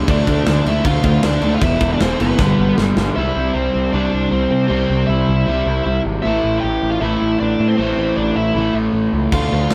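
Punk rock in A minor at 156 BPM, urgent and aggressive, this cut from a longer piece puts a crunchy, double-tracked overdriven rhythm guitar riff up front alongside a growly fuzz bass and a biting lead guitar melody with overdrive and delay. A tight acoustic drum kit with bright cymbals and a tight kick drives the opening until a fill at 2.4 s, then drops out, returning only at 9.3 s while the guitars and bass carry on through chords moving from Dm toward Am. The band sounds live in one stone room with moderate reverb.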